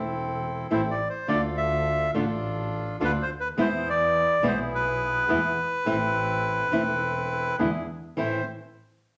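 A reedy, dark, smooth bandoneon melody carries this sultry, melancholic tango excerpt, sung in the upper register over a rubato 4/4 feel at 105 BPM in A harmonic minor. Beneath it, a second bandoneon plays reedy, bright stabs up front, while a single bowed double bass carries the low line with a warm, soft attack, vibrato and expressive portamento. The melody and a small, fingerpicked nylon-string guitar, also up front, both enter at 0.7 seconds. The harmony moves from Am to Dm and E, returns to Am, then leans on E7 before resolving to Am as a new section begins at 8.2 seconds. A wet, large studio reverb gives the ensemble a spacious, intimate sheen.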